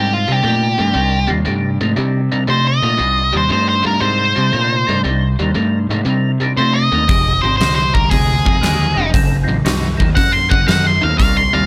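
Smoky and brooding, this swung blues rock and southern rock power-trio excerpt is led by a dark, fuzzy octave-fuzz lead guitar melody up front, over a bright, double-tracked overdriven guitar riff and a growling picked bass. A mellow, round tonewheel organ holds sustained chords with key click, third harmonic percussion, chorus vibrato and a slow rotary speaker, while the harmony moves from Cm9 to Fm9 at 7.1 seconds and F#dim7 at 9.1 seconds. A huge arena drum kit with a fat snare and punchy kick enters at 7.1 seconds, ringing in a hall-like space until 11.4 seconds.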